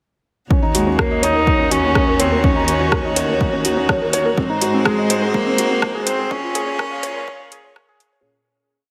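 Opening at 0.5 s, a soft, felt-muted upright piano riff with audible action noise and digital delay sits up front over a woody string quartet pad and a lush bowed cello section holding the root bass, both pumping against a punchy, overdriven four-on-the-floor electronic kick, before a nasal sul tasto solo cello enters at 0.7 s with floating arch-shaped motif phrases alongside a deep house kit of metallic closed hats and rim clicks, forming a hypnotic, melancholic piano and strings electronica piece at 124 BPM in Eb dorian that builds throughout under huge ambient reverb and fades out from 5.7 s.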